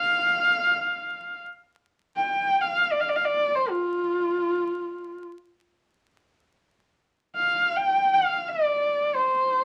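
A lone horsehead fiddle opens this short excerpt of Mongolian traditional music, its bowed horsehair strings sounding husky and focused as a single player moves in free time between F4 and G5. The mood feels vast and galloping. Vibrato and portamento shape the line, and the fiddle sits up front with a warm, smooth top. A small room's reverb adds a wet halo around the instrument, while a layer of vinyl crackle runs beneath it. The opening phrase returns at 7.1 seconds, and the fiddle carries on alone until the cut at 9.6 seconds.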